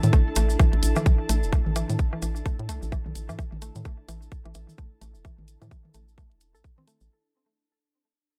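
Hypnotic and clinical, this short minimal techno excerpt runs at a steady 4/4 pulse with a lightly swung sixteenth-note feel. A tight, tape-warm electronic kick sits up front beside a hollow, bouncy FM bass with a dark, knocking punch, the bass pumping with sidechain compression. Electronic hi-hats, a grainy acoustic cabasa and overdriven electronic toms, re-recorded in a small room, fill out the percussion. A woody, round, mallet-like synth pluck carries the riff with chorus and delay, and a filter sweeps across it throughout. Around it, an airy, breathy pad with chorus and a tense, swarming granular drone held in the background both pump with the sidechain, while the whole passage fades out over its 7.1 seconds in a light reverb.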